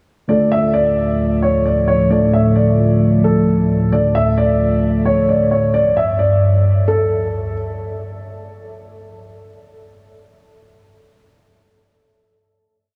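A dreamy mix soaked in huge ambient reverb surrounds this short, melancholic trap breakdown in a half-time feel. The dark concert grand piano sits up front with a mellow, boxy tone, playing a looping melody through a low-pass filter and diffuse delay from 0.3 seconds. Muted, felt-like synth keys repeat soft, open-voiced held chords with chorus until 5.8 seconds, while beneath them a deep analog pad with a sub octave and slow attack sustains moody chords through chorus and phaser from 0.7 seconds.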